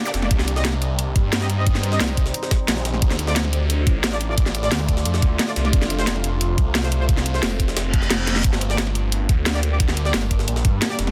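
This cut from a longer dark technical drum and bass track runs at 177 BPM in a straight 4/4, with a knocking electronic kick up front from 0.3 seconds, layered with an overdriven drum kit of cracking snare and bright hats. Beneath them sits a gritty, pitched-up jungle sampler-style kit, its high-tuned snare and hats filtered and tucked into the background with a tape-warm, compressed character. A thick, swirling detuned saw bass carries the low end in G minor with phaser and overdrive, sounding saturated and bright. A deep, moody pad sustains chords through chorus and built-in reverb with sidechain pumping, while a close-miked classical brass section stabs in the background through a delay. The harmony moves from Cm to Dm, F and finally Gm, with a zap at the start, a reverse cymbal from 7.9 to 8.4 seconds and a drum fill at 8.3 seconds heightening the tense, mechanical mood inside a dense, heavily limited modern master.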